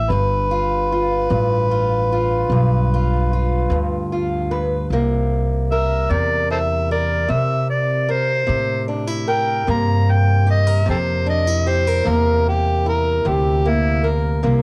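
An overdriven, gritty harmonica takes a jazz-style solo from 4.9 seconds, full of tongue slaps and scooped notes, over boxy fingerpicked swing guitar with old strings and woody pizzicato upright bass in this laid-back, rollicking acoustic country blues excerpt in 12/8 at 50 BPM, moving from G7 to C7 in C mixolydian with light small-room reverb and the character of a home cassette recording on the harmonica and guitar.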